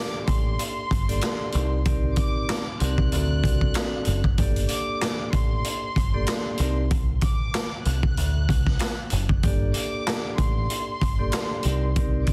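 Boom-bap hip-hop at 95 BPM in G harmonic minor, tough and reflective, with a swung 16th feel cycling through Gmadd9, Cm9 and D7 in this short cut from a longer piece. A warm chamber violin section carries a high, softly bowed sul tasto melody with light vibrato and digital delay over a dark, ringing vibraphone accompaniment with a cassette-tape tint. From 0.3 s a round, punchy dub electric bass and an up-front, gritty garage drum kit join in, with a boomy kick, snare, hi-hat and handclaps, all in a dry, dense, heavily limited mix with vinyl crackle and a faint mains hum.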